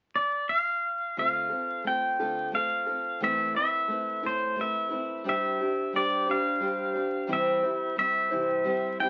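Acoustic folk for a duo or small band, haunting and melancholic at a slow 59 BPM in a straight 6/8 in D dorian, tuned to A4 = 436 Hz: this extract opens with a warm, clean, compressed pedal steel guitar playing the melody up front with fingerpicks, slide and volume swells from 0.2 s, before a bright, picked steel-string acoustic guitar joins as accompaniment at 1.2 s over Dm7, Amadd9, Gsus4 and C, all heard through moderate club reverb and the crackle and muffled top of a very old 78 rpm record.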